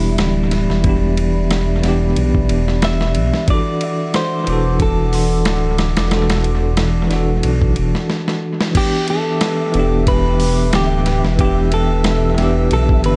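A clean electric guitar carries the melody over bell-like tine electric piano chords with tremolo, a warbly, nostalgic pad sitting in the background, and a deep, rumbling detuned saw bass up front, all heard from the opening instant of this dark, cinematic trip hop excerpt. At 0.2 seconds a dusty, sampler-style soul drum kit joins with a thumpy kick, medium-tuned snare, hi-hat, ride and crash, its gritty, compressed sound treated with analog delay and set prominently forward. The harmony moves from Em7 to D and back to Em7, with a relaxed swing on the sixteenths. At 8.1 seconds the groove stops for a drum fill, and from 9.1 seconds a very quiet, flickering granular texture hovers in the upper register. Tape echo trails both the guitar and the electric piano, while the pad carries chorus and lo-fi 12-bit sampler grit, giving a dry but echo-heavy mix a hazy, vintage character.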